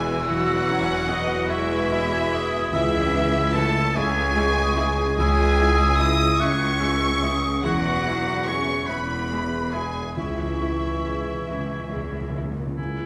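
In a rubato 6/8 lilt, this sorrowful, moving cinematic fragment sets a lush violin section's vibrato melody over a softer second violin line, a pure hollow flute, a distant oboe and, from 12.8 seconds, a mellow clarinet, while clear violas, a felt-muted upright piano, dark background French horns, ringing fingerpicked harp arpeggios, an expressive double bass section with portamento and smooth cellos fill out the harmony, and hard-mallet timpani sound at 2.7 seconds before returning for a fill from 10.2 seconds in a reverberant concert hall.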